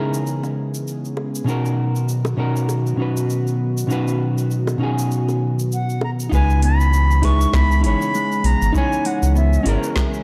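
A round, deep analog bass sits up front from 6.3 seconds, its sawtooth-and-sine tone dark and evolving beneath this relaxed, smooth sunset chillout piece at 99 BPM in 4/4, with a 16th-note swing. From the start, a clean, fingered hollow-body jazz guitar carries the accompaniment through digital delay over C#m7 and Bmaj7 chords, while a breathy, detuned pad with chorus holds mellow sustained chords in the background. A smooth R&B drum kit with a woody snare, metallic hats and cabasa sits in studio reverb, and soft-handed, low-tuned bongos play close and dry until 6.2 seconds. At 5.7 seconds a bright, reedy concert flute takes the melody with vibrato and tape echo, and soon after a fingerpicked, ringing Celtic harp adds arpeggios through digital delay, joined by a deep electronic kick in the background. The dark, warm production is bathed in light reverb and digital ambience.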